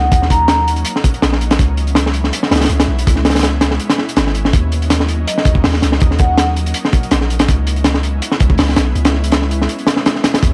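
Drum and bass with a jungle edge, this frenetic yet nostalgic excerpt runs at 163 BPM in 4/4 with a light swing on the sixteenths, moving between Ebm7 and Dbm7. A crunchy breakbeat kit sits up front from 0.1 seconds, its high-tuned snare, tight kick and hi-hat saturated and dark with a rolled-off top. Underneath, a long sustained 808-style bass, deep and sine-like with a fast attack and decaying tail, holds the low end throughout. An ethereal, airy pad drifts in the background with detuned, warbling unison tones, slow attack and long release, thickened by ensemble chorus and its own reverb. A soft-mallet vibraphone, metallic and ringing with its motor off, offers brief melodic phrases at 0.0 and 5.3 seconds, roughened by vintage 12-bit sampler grit and trailed by dub echo. The whole recording is dry and gritty, with a hardware character and a layer of vinyl crackle.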